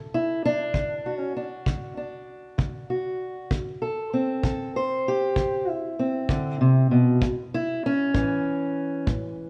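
A fingerpicked steel-string acoustic guitar carries the melody in this short cut from a longer acoustic country blues piece, its parlour tone dark and boxy, with finger squeak audible as it sits up front. The mood is laid-back yet rollicking, moving at 65 BPM in a 12/8 metre with a straight feel. The guitar plays from the start to 9.5 seconds, ranging from A2 to C5 over a D chord that shifts to D5 at 3.5 seconds and to A at 7.2 seconds. A kick drum enters at 0.7 seconds, also up front, with a punchy, smooth character, a rolled-off top, brushes and a small-room sound. A moderate reverb like a scoring stage's gives the duo a sense of space around it.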